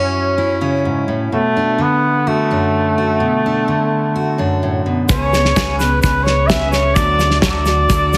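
Nostalgic and uplifting, this short indie folk passage at 127 BPM opens with a mellow trumpet melody, carried with light vibrato and an analog delay that sounds distant and roomy, over a bright, full-bodied fingerpicked steel-string acoustic guitar with audible finger squeak, moving from F#m7 to Bm7. At 5.1 seconds the arrangement builds as the fingerpicked guitar gives way to a shimmering, octave-doubled twelve-string, joined by a dark, round fingered electric bass, a punchy, rolled-off small-room drum kit and a grainy egg shaker tucked in the background, as the chords shift to C#m7 and D. Light reverb and a heavily compressed, radio-like sound shape the overall mix.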